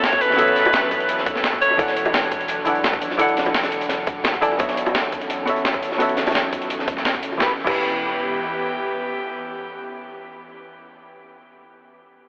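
An edgy, forceful alto saxophone with vibrato and tape echo opens this rolling, soulful liquid drum and bass cut at 171 BPM in E dorian, falling silent at 1.8 s while an up-front, dark, clean hollow-body jazz guitar, a breathy chorused pad, and a deep, saturated sub bass tucked in the background carry the B9sus4 and E9sus4 harmony, as a filter sweep moves across an analog synth pad. A gritty, compressed sampler-style breakbeat kit with crash, hi-hat and snare drives the groove, layered with a very quiet crunchy breakbeat kit, a tight electronic kick and soft, round low-tuned bongos, and the drums drop out by 7.8 s as the harmony settles on E minor. The whole dreamy mix is soaked in a huge ambient reverb with a telephone-like tone, and the guitar rings on beside the pad, outlasting it until 11.5 s.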